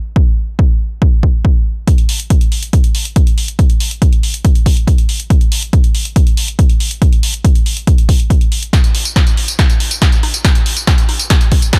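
A straight 4/4 pulse at 140 BPM drives this bittersweet trance excerpt, opening with an up-front, punchy electronic kick drum from 0.2 seconds. At 1.9 seconds an analog drum machine joins with a tape-warm snare, congas, hi-hat and tambourine as a build-up begins. Its hats, snare and percussion are high-pass filtered, and the hats and percussion pump against the sidechain, before a drum fill arrives at 8.7 seconds and carries the dry mix to its end.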